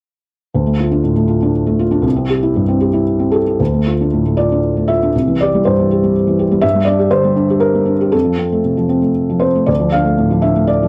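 Neoclassical minimalist piano in D minor, wistful and intimate, moving at 118 BPM in a rubato 3/4. A lone felt-muted upright piano plays from 0.5 s to 10.9 s, soft and mellow with thick felt and audible action noise, sitting up front and spanning C2 to F5. Its harmony rocks between Dm and C, then a second passage from 3.6 s moves through Dm, C, Gm and F before settling back on Dm, all captured in a close, dry 1970s-style studio sound with light reverb, cut from a longer piece.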